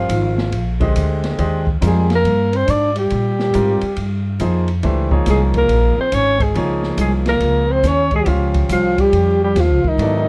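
Modal jazz in Eb mixolydian at 139 BPM with a hypnotic, spiritual swing, cut from a longer piece: a breathy, subtone alto saxophone with light vibrato and plate reverb carries the melody up front over a mellow trombone second line with scooped notes, a clear baby grand piano with audible action noise and long sustain accompanies through Ebmaj9 and then Dbmaj9 at 4.8 seconds, a woody pizzicato upright bass sits close, and a small-room drum kit of boomy kick, medium-tuned snare, hi-hat and dark, rolled-off ride cymbal plays from 0.1 seconds within a warm, lightly reverberant production.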